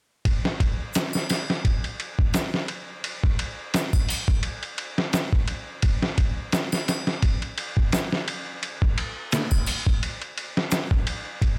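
A gritty, pitched-down sampler-style drum kit opens at 0.3 seconds, up front with a thumpy kick, medium-tuned snare, hi-hat and ride in a small room, setting a melancholic, hypnotic trip hop groove at 86 BPM with a light sixteenth-note swing, while a close, dry egg shaker, triangle and group handclap sit in the background from 0.9 to 10.9 seconds in this short cut from a longer piece.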